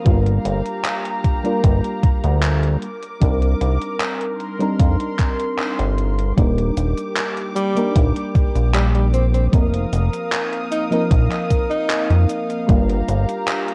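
A mellow FM electric piano and a studio string section open this dreamy, nostalgic vaporwave excerpt in Eb major, moving slowly at 76 BPM in a straight 4/4. The piano is soft, round and dark, colored by phaser, analog chorus and delay, while the bowed strings hold sustained chords with a reedy, gut-string, period-style tone and a smooth top. A glossy, nasal chorused synth bass sits up front with tube saturation, joined by a thumpy, overdriven electronic kick and a gated 80s digital drum machine of cabasa, handclaps and hi-hat, both drum parts sampler-style and re-recorded in a small room. The harmony drifts from Gm7 to Cm9, then to Ebmaj7 and F7sus4 before returning to Gm7. At 7.6 seconds a breathy, close-miked tenor saxophone enters with a jazz-style solo melody, its clear vibrato roughened by 12-bit sampler grit and tape echo, and it stops at 12.3 seconds. Light reverb and a worn, warbling cassette tape quality with pitch drift give the whole piece a faded, memory-like haze.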